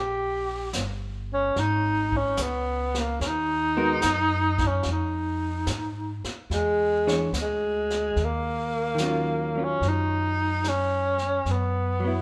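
A smoky, intimate room sound with moderate large studio reverb frames this wistful jazz ballad excerpt in Eb minor at 73 BPM, where a breathy, subtoned tenor saxophone sings the melody up front with vibrato and scooped notes over woody pizzicato upright bass from the start, distant, roomy brushed drums with a high-tuned snare and boomy kick entering at 0.7 seconds, and a dark, clean hollow-body electric guitar joining at 3.8 seconds on chords moving from Gm through Ab7(no3), Fm7 and E6 to Ebm9 and Gb7sus4.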